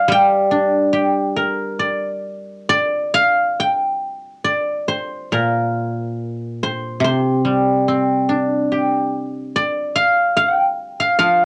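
A home cassette recording in a small, moderately reverberant room carries a solo guzheng, its silvery, ringing tone placed up front with a tape character. This short passage of Chinese traditional music moves with an elegant, longing mood, the rubato phrasing stretching and easing the beat. Played with fingerpicks across a range from Bb2 to G5, the instrument shifts into a new section at 3.6 seconds and continues to the close at 11.4 seconds.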